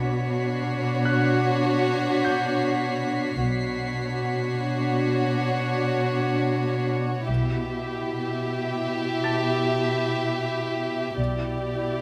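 A mysterious, tense cinematic suspense cue at 77 BPM in 5/4 and B minor, cut from a longer piece, where hushed sul tasto chamber strings voice a Bmadd9 that moves to Em/B at 7.3 seconds: warm violins carry the melody with a second violin line up front, a dark viola section accompanies, a woody cello and a smooth-topped double bass anchor a low B, a high violin texture lingers until 6.9 seconds, a brilliant grand piano glints in the background with audible action noise, and a huge reverse cymbal is barely audible from 11.2 seconds, all captured closely and in intimate detail with light reverb.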